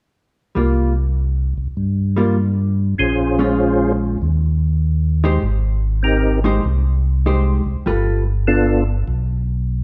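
Bluesy, soulful swing jazz at 99 BPM in a reverberant recital hall, where a round, mellow tonewheel organ carries the bass line with chorus vibrato and slow rotary speaker from 0.6 seconds, a dark, compressed hollow-body electric guitar comps up front, and a second, percussive organ with third-harmonic click takes the melody from 3.0 seconds over chords moving from C7sus4 through Bbm7, Eb6 and Abmaj7 to G9.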